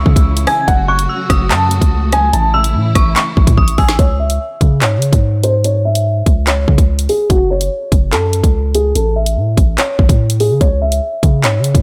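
A dark, boxy concert grand piano carries the melody in C# minor, joined by an eerie, warbling FM synth bell with chorus and tape echo and a bowed studio string section holding smooth chords, while a deep sine 808-style bass and an up-front electronic drill kit with a hard-clipped kick, woody snare, hi-hats, claps and rim clicks arrive almost at once. This tense, half-time drill cut moves at 145 BPM over a C#m, F#m, A progression, and a drum fill leads to 4.0 seconds, where the bell and strings drop out. From there the piano, with its audible action noise, runs through a filter sweep over the bass and drums in a dry, close mix.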